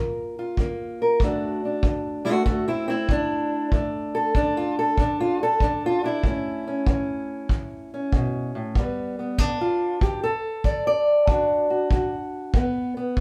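A swung 95 BPM groove in 4/4 drives this rollicking, gritty slice of acoustic country blues, cut from a longer piece and tuned to A4 = 441 Hz. A fingerpicked steel-string acoustic guitar carries the melody up front from 0.0 seconds, with a dark, woody, boxy parlour tone and the character of old strings, ranging from D2 to D5. A kick drum joins at 0.6 seconds, tight yet roomy, with brushes, a rolled-off top and a distant studio-room character despite sitting up front. The harmony opens on a rootless Gm7 before settling on D, then moves through A and G and back to D, ending on G at 12.6 seconds. Light reverb and the feel of a band playing live in one room round out the recording.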